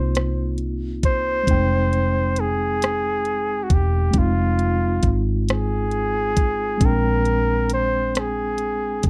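A slow, straight six-eight groove from an up-front electronic R&B drum kit of knocking kick, hi-hat and rim click, entering at 0.2 s, carries this sultry, yearning fragment of a longer piece, where a dark, round, punchy foam-muted fingered electric bass sits under mellow, clean tine electric piano chords moving from a rootless Ab69 to Fm9 and Bb13, while a close-miked flugelhorn solo with soft attack, light vibrato, scooped notes and a slapback echo sings a jazz-style melody in a dry, close, 1970s-style studio sound.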